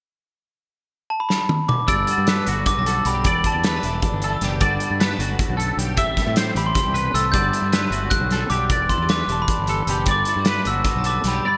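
A ringing, bell-like glockenspiel played with soft plastic mallets opens this short cut from a longer math rock and midwest emo piece, and a loose indie drum kit follows at 1.3 seconds with a fill of hi-hat, kick, snare and toms. At 1.9 seconds the full band arrives in G major, moving at 308 BPM in eighths through a straight 7/8 metre over a wistful, intricate progression of Gmaj7, Em7 and Am7 that settles on Gmaj9. A twangy, compressed electric guitar spins bright, clean arpeggios through ensemble chorus and delay, while a twelve-string electric guitar picks its accompaniment in the background. Beneath them a fuzz fingered electric bass growls with overdrive, and the up-front drums have a punchy kick, a medium-tuned snare, a rolled-off top and a pumping room sound with gated reverb. The glockenspiel melody sits mid-forward and returns at 6.6 seconds, and a lush hall reverb gives the whole piece a bright 1980s-style digital sheen.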